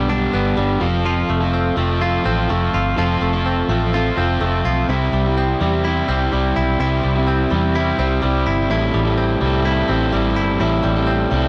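A straight 4/4 pulse drives this bright, nostalgic indie pop fragment, cut from a longer piece, as a crunchy overdriven guitar plays its picked accompaniment alongside a clean, twangy, direct-recorded electric guitar picking compressed arpeggios. Beneath them, a vintage fingered bass, foam-muted and round with a dark amped tone, sits up front with both guitars throughout the 11.5 seconds. The chords move from G to F, settle on C at 4.9 seconds and reach Am7 at 8.7 seconds, all in a moderate studio reverb.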